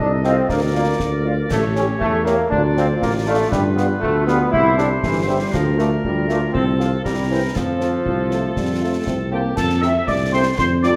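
Heard through the wet reverb of a recital hall, this festive, rousing excerpt of a military-style march for wind band moves at 119 BPM in 2/4 in F major, with a mellow, punchy tuba and clear, present trombone chords up front beneath a distant, dark trumpet melody, roomy French horn accompaniment, a tight woodwind second line with light vibrato, and close, dry snare drum, bass drum and clash cymbals; a soft-attack euphonium solo enters at 8.1 seconds and a pure wooden piccolo appears at 9.3 seconds.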